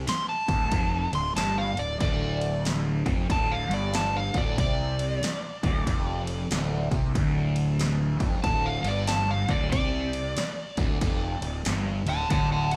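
A bright, double-tracked, overdriven hollow-body guitar riff with a phaser and a growly fuzz bass open this raunchy, swaggering blues rock and southern rock passage together at a swung 93 BPM in 4/4. A punchy analog drum machine of kick, snare and ride, re-recorded in a large room, joins them, while an overdriven slide guitar carries the high melody up front. The band sounds as though it is playing live together in a big studio space for this 12.8-second section cut from a longer piece.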